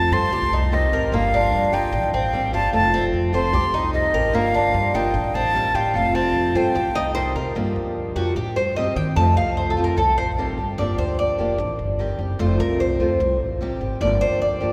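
In a straight 4/4 at 149 BPM, this nostalgic, sultry Latin piece in G minor opens with an airy, reedy concert flute carrying the melody up front until 7.4 s, while a boxy, old-strung ladder-braced acoustic guitar picks the accompaniment, a thumpy, woody pizzicato upright bass anchors the low end, and a mellow, metallic Cuban tres rolls out double-string arpeggios before taking a solo from 7.6 s, with a small, bright nylon-string guitar slipping in a brief fingerpicked second line at 7.0 s, complete with finger squeak, the whole bathed in a long, wet cathedral reverb that places it in a church or concert hall.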